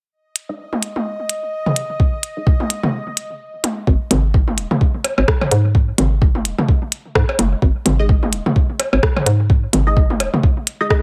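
Quirky and cool, this minimal techno excerpt rides a swung 4/4 groove inside an echo-heavy mix with light reverb and digital ambience. A minimal click kit of clicky hats and rim clicks starts things off, joined by tape-warm, layered electronic toms and percussion blips and a bubbling sawtooth texture whose resonant filter steps at random, carrying chorus, its own reverb and sidechain pumping. A muted, detuned dub chord stab with a moving notch and phaser appears briefly near the start, then drops out until it returns at 8.0 s. The soft electronic kick sits up front from 2.0 s, and after a short break the second section arrives at 3.9 s with a hollow, bouncy FM bass that is punchy and decaying, pumping under sidechain compression. Analog delay trails the clicks, percussion and stabs, giving the dark, deep chords a dubby echo.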